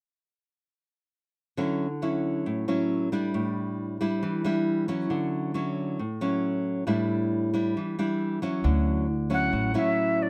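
A light reverb gives this brief bossa nova excerpt a gentle sense of space, with each part sitting up front. It moves at a straight 136 BPM in 4/4, and the mood is sunny and romantic. A fingerpicked nylon-string guitar opens alone at 1.6 seconds, with a classical touch and the occasional finger squeak, alternating between A7sus4 and Dmaj9. At 8.6 seconds a woody, thumpy upright bass enters, played pizzicato, as the music moves into a new section. A jazz flute joins at 9.3 seconds with an airy, expressive tone, a crisp chiff on its attack and a touch of vibrato, singing briefly within a narrow range over the warm guitar before the clip ends.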